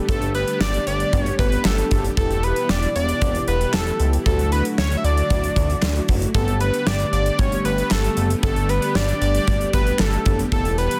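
A straight 4/4 pulse at 115 BPM drives this nocturnal synth-pop excerpt: a gated 80s drum kit sits up front with a tight kick, medium-tuned snare, hi-hat and handclaps in a polished, airy room, while a glossy, nasal chorused synth bass lays down the low end. A fat, detuned analog lead with vibrato and a triangle sub octave carries the melody, backed by dark, round, chorused synth brass and vintage, full-bodied string-machine violas whose soft-attack chords drift in the background through phaser and ensemble chorus. The harmony cycles through Gadd9, Em and Dadd9 before returning to Gadd9, all under light small-room reverb and a dense, heavily limited modern master.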